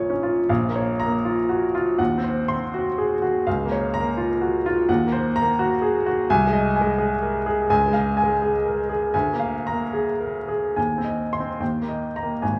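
Bittersweet and brooding, this short fragment of a romantic classical character piece unfolds in a rubato 2/4 at roughly 71-86 BPM, opening in Bb minor before turning toward Ab major at 6.3 s. A lone baby grand piano carries everything, its clear, intimate tone sitting up front with the natural sound of its action audible beneath the notes. A wet recital-hall reverb surrounds it, mixed with the closer air of a small room.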